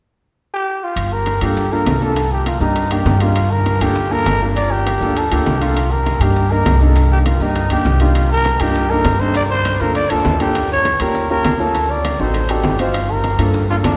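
A growling trumpet leads this sultry, driving Afro-Cuban jazz excerpt, its dark, breathy, raspy tone up front in the mix yet carrying a distant, roomy quality, entering alone at 0.5 s before the band joins at 1.0 s. A woody, growly pizzicato upright bass sits prominently beneath, while low-tuned bongos struck with hard hands, ringing metal-shell timbales and grainy maracas tucked in the background drive the groove, and a clear, natural grand piano adds accompaniment from 1.4 s over minor-key harmony that passes through Eb7 and D7b9 before returning to Gm9. The whole performance floats in a cathedral-like reverb with a long, wet tail and a softened top end.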